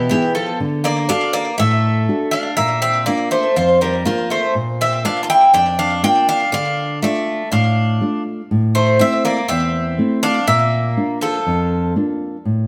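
Two bouzoukis and a nylon-string guitar start together in this dramatic, driving fragment of Greek folk music, set at 122 BPM in a straight 4/4. The lead bouzouki carries the melody up front, its bright, metallic double strings, some doubled at the octave, given a slapback echo. Beneath it a second bouzouki plays a lower supporting line with the same bright, metallic, picked double-course tone, set further back in the mix. The up-front nylon-string guitar supplies a warm, thumb-plucked classical accompaniment through a chord sequence of E, D, Bb, Dm, Am and back to Bb. A moderate plate reverb lends the group a sense of space, and the guitar rings on alone briefly after both bouzoukis stop at 11.9 seconds, until 12.7 seconds.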